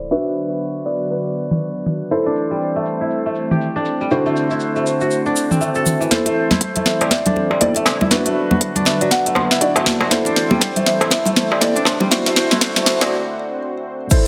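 Up-front afro-pop drums with a sharp snare and smooth hats drive this warm, spiritual afro house excerpt at 120 BPM in A dorian. Soft, muted felt-piano stabs with audible action noise and a detuned sawtooth pad with chorus open under filter sweeps, while a woody kalimba melody rings over them. A grainy tube shaker and bright, fingerpicked kora arpeggios with 12-bit sampler grit arrive by 2.3 seconds. A deep background kick and hard-handed high-tuned congas join at 6.1 seconds, followed by a crisp metal-shell darbuka at 7.0 seconds, for a drum-filled build-up that drops into a break at 13.1 seconds, all bathed in a lush hall reverb.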